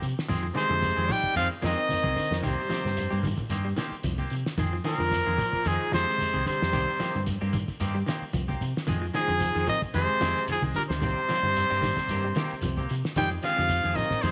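Hypnotic and driving, this afrobeat excerpt sets a brilliant, up-front trumpet melody over raspy baritone saxophone and bucket-muted trombone second lines, with a round, punchy fingered bass, a cloth-damped thuddy drum kit, shekere, low-tuned congas, and two twangy clean electric guitars, one playing chorus-soaked stabs and the other arpeggios. A reedy, lightly overdriven electric piano slips in at 13.2 seconds, and everything cycles between Fm7 and Cm7 in a small room with light reverb.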